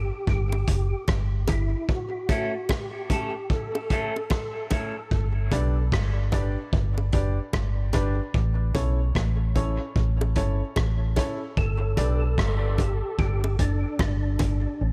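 This excerpt of hazy, spacious dub reggae at 74 BPM opens on a round, key-clicking tonewheel organ melody, lightly overdriven through a fast rotary speaker and dub echo, over a foam-muted, punchy electric bass, with a gritty, tight-kicked breakbeat kit of hi-hat, kick and rim click and high-tuned, dry bongos joining almost at once. A dark, slightly broken-up picked guitar adds phased, echoing accompaniment near the start, then a woody upright piano with audible action noise plays echoing stabs from 5.5 seconds, and the organ returns at 11.6 seconds. Swung sixteenths in 4/4 and a small, echo-heavy room carry the G lydian groove as it moves between A and G chords.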